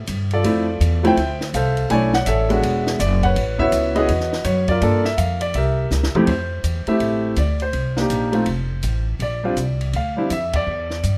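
A clear, up-front grand piano carries the melody in this playful, relaxed jazz piano trio excerpt in F major, swinging at 164 BPM with a touch of plate reverb on its tone. A woody pizzicato upright bass with steel strings sits up front alongside it, while a compact cocktail kit plays hi-hat, ride, snare, kick and toms with dark cymbals, a high-tuned snare and a tight kick in a small, natural-sounding room. Harmonies move from Dm9 through Gm7 and C7b9 to Fmaj9, and a drum fill at 5.9 seconds leads into the second section before a band accent at 10.5 seconds, just ahead of a rootless A7.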